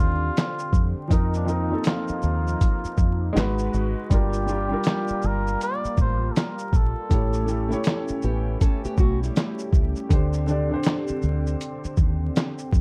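Lo-fi hip hop in G minor at 80 BPM with a swung sixteenth-note feel, hazy and melancholic, opening on a D7sus4 and later passing through Gm7 and A7. A veiled, cup-muted trumpet sings a jazz-style melody with scooped notes, tape echo and plate reverb until 7.9 seconds, over a felt-muted upright piano whose action noise stays audible, a thick detuned sawtooth pad with chorus and phaser in the background, and a round, punchy foam-muted bass sitting up front. A muffled sampler-style kit with a thumpy kick, fat snare, handclaps, hi-hat and shaker enters at 0.4 seconds, and a small fingerpicked nylon-string guitar adds a brief second line with tape echo from 8.2 seconds, all within a dark production dusted with vinyl crackle.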